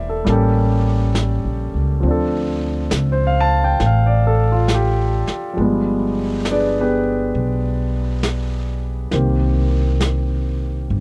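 A slow swing at 68 BPM in 4/4, with the eighth notes lilting at a 67% swing, sets an intimate, romantic mood in this brief jazz ballad fragment, cut from a longer piece. The upright bass anchors the low end with woody, pizzicato tones on steel strings, sitting up front from the opening moment. A warm grand piano accompanies with long sustain, reaching from the middle register into the upper keys and also placed close and present. The vintage brush drum kit joins at 0.3 s, its medium-tuned snare and hi-hat softened by brushes, with a rolled-off top and a mid-forward character that keeps it quieter behind the bass and piano. The harmony moves through A7b9, Dm7 and G7b9 before settling on Cm7 at 9.1 s. The sound is dry and close, in the manner of a 1970s studio session with little room reverb.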